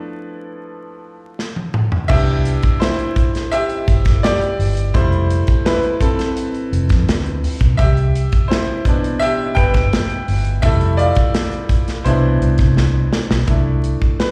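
Smooth and romantic, this excerpt of lush 1970s-style soul in C major at 84 BPM opens with a bright, brilliant baby grand piano playing alone with plate reverb and slapback echo, joined by a modern studio drum kit with bright cymbals and a punchy kick entering on a fill at 1.4 seconds, then a dark, round, foam-muted fingered electric bass at 2.1 seconds as the piano takes the lead over Cmaj7 and Fmaj7 chords, all heard as a live gig through the venue's PA with recital hall reverb and vinyl crackle.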